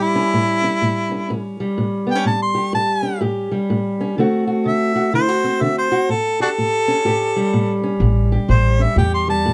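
A swung 4/4 pulse at 125 BPM drives this gritty, laid-back acoustic country blues in A mixolydian, cut from a longer piece. A clear harmonica carries the melody as a solo from the start, played up front in a jazz style with vibrato, tongue slaps and scooped notes. Beneath it, a fingerpicked steel-string parlour guitar supplies a dark, boxy accompaniment over changes that move from A7 to D7 at 4.2 seconds and back to A7 at 6.1 seconds. At 8.0 seconds a pizzicato upright bass joins for the closing moments, its woody, thumpy low end sitting up front and a little louder than the other two parts. Light reverb and a dark, warm production round out the sound.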